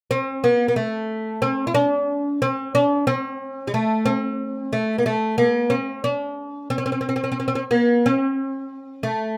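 Festive and passionate, this short Arabic instrumental excerpt moves at a steady 91 BPM in a straight 4/4 feel. A lone oud carries the melody from 0.1 to 9.4 seconds, sitting up front in the mix. Its plucked, fretless double strings give a warm, woody tone across a range of about G#3 to E4. A light reverb adds a touch of space around the oud. Cut from a longer piece, the passage stays on one section throughout.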